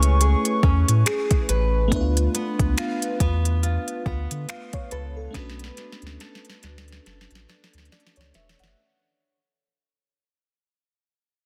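A dense, heavily limited modern mix with light digital reverb carries this tender, romantic contemporary R&B fragment at 70 BPM, with a lazy sixteenth-note swing, fading out across its whole length. A round, deep sine sub bass and an overdriven, electronic drum kit of finger snaps, crisp hats, soft kick and sharp snare sit up front, rolling into a drum fill from 5.3 seconds. Around them, a lush, dark FM electric piano with chorus, bright fingerpicked nylon-string guitar arpeggios through tape echo, and a hollow, flute-like pad that drops out at 1.9 seconds move through Amaj9, Dm6 and Bm9.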